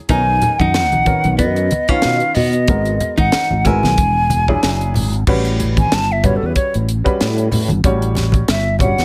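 Funky and bright, this short cut of electric jazz fusion moves at 93 BPM in 4/4 with a light sixteenth-note swing, settling into A mixolydian at 5.3 s. An airy, hollow concert flute carries the melody up front with vibrato and a crisp attack, then takes a solo from 5.3 s to the end. Beneath it, a growly fretless electric bass treated with ensemble chorus sustains low and prominent, while a tight funk drum kit with a high-tuned snare, tight kick and bright cymbals drives the groove from a dry, up-front position. A baby grand piano supplies intimate accompaniment with short sustain and audible action noise, and a dark, clean, picked archtop guitar adds a compressed second line until 4.9 s. Low-tuned, ringing congas played with hard hands join at 0.4 s in the background, and the harmony moves through Cbmaj9, Abm9 and E9 before landing on A13, all set in a light reverb.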